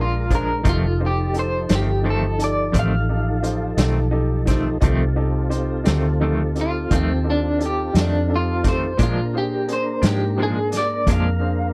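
A laid-back 12/8 slow blues at 58 BPM in F mixolydian, this swaggering excerpt opens on a Bb7 chord, moves to F7 at 0.7 seconds and returns to Bb7 at 9.0 seconds. Up front, a picked electric guitar through a small old amp carries a clean solo melody throughout, its slightly broken-up, compressed tone colored by tremolo. A dark, foam-muted fingered bass with a round, punchy attack and a vintage drum kit on kick, medium-tuned snare and hi-hat, heard in a small, pumping room with a rolled-off top, sit just as close, with the drums entering at 0.3 seconds. A bright, clean semi-hollow guitar adds picked, hollow-bodied accompaniment with its own tremolo. Further back, a smooth tonewheel organ holds sustained chords through a slow rotary speaker with chorus vibrato and key click, while a clear, woody, slightly detuned upright piano with a worn character fills in alongside it. The sound is dry, with little reverb, giving the band a close, intimate feel.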